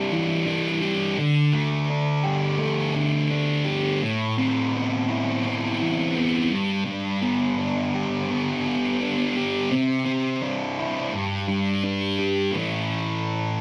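A thick fuzz guitar carries this short rock excerpt alone, its electric, distorted tone double-tracked and placed up front, with phaser coloring the picked lines as they range from G2 to G4. The mood is mysterious and dark, moving at 84 BPM in a straight 4/4 feel in A minor, tuned to A4 = 442 Hz. The harmony drifts through a rootless Cadd9, Dsus4, Amadd9 and G before returning to Cadd9 and settling onto G5. At 12.6 seconds a brief new section arrives on an A5 chord, closing the fragment at 13.6 seconds. A wet studio reverb gives the guitar a roomy halo, while a layer of vinyl crackle adds a worn, grainy texture to the sound.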